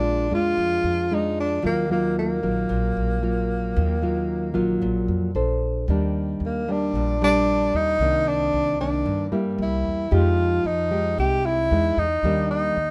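This breezy, romantic bossa nova excerpt opens with a mellow tenor saxophone singing a jazz-style solo melody up front, its subtone, gentle vibrato and scooped notes capped by a smooth top. Beside it, a full-bodied classical nylon-string guitar plays thumb-plucked accompaniment, while a woody, thumpy upright bass, plucked and dark, anchors the low end. Light reverb softens the trio as the harmony settles onto Ebmaj7 at 5.9 s for a new section of lush, extended jazz chords.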